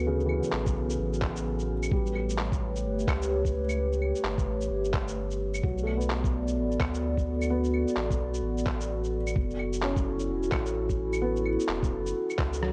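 A huge ambient reverb with a long 6.4-second tail wraps this short excerpt of rainy, melancholic future garage, giving it a cavernous, misty depth. A dark analog pad built from detuned square, sawtooth and triangle waves with a sub octave holds slow-blooming chords through chorus and phaser, while a felt-muted upright piano adds soft, intimate accompaniment, its action noise audible beneath an analog delay. A round sine sub bass sits up front, and the pad, piano and bass all breathe with sidechain pumping as the harmony moves from Bm7 to A9, back to Bm7 and on to F#m7. Muffled, tape-warm percussion of shaker, claves, handclaps and rim click enters at 0.2 seconds, with a thumpy compressed kick arriving at 0.7 seconds, both re-recorded in a large room and swung on the sixteenths. A brief drum fill closes the passage at 12.4 seconds.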